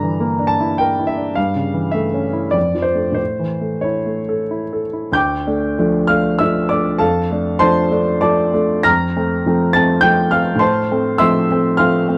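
This is a romantic classical character piece for solo piano in D minor, brooding and stormy in mood, moving in 3/4 at roughly 90 to 106 BPM with a flexible, rubato feel. A grand piano carries everything on its own across the 12.2-second fragment, cut from a longer work, spanning D2 up to Bb6. Its tone is clear and natural, placed up front and intimate enough that the action noise of the instrument can be heard. The opening phrase passes through Em7b5/G and A7/G to Dm/F and A, and a second phrase begins at 5.2 seconds, settling on Dm before turning toward F and closing on F/A. Light reverb surrounds the piano within a dark production.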